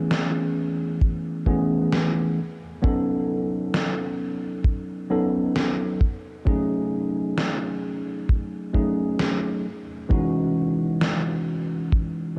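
A worn, slightly out-of-tune tine electric piano sits up front in this melancholic, nostalgic vaporwave excerpt, its chords moving from Amaj9 through B9 and F#m69 to Emaj13 under analog chorus and tape echo. A dry, tight acoustic kick with a rolled-off top enters at 1.0 seconds beside a sampler-style electronic snare treated with gated reverb and re-recorded in a large room. The production is dark and cassette-toned, with light studio reverb and a slight swing on the sixteenths.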